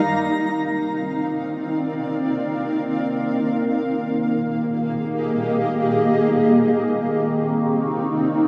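A granular cloud pad and an overtone-sweeping synth drone fade in together from 0.0 seconds, opening this luminous, serene ambient passage cut from a longer piece. The pad sits up front, holding sustained chords from Bb3 to F5 with a blurred, detuned, full-bodied timbre that keeps evolving as its slow attacks and long releases overlap. Beneath it, the drone holds the low register between Eb3 and Bb3, its wave-folded, resonant tone shifting through moving overtones and a moving notch, thickened by chorus. The harmony drifts in free time from Cm11 to Fm11 at 3.4 seconds and back to Cm11 at 6.7 seconds. A lush hall reverb with a long tail bathes the sound, and a cassette-tape character colours the whole.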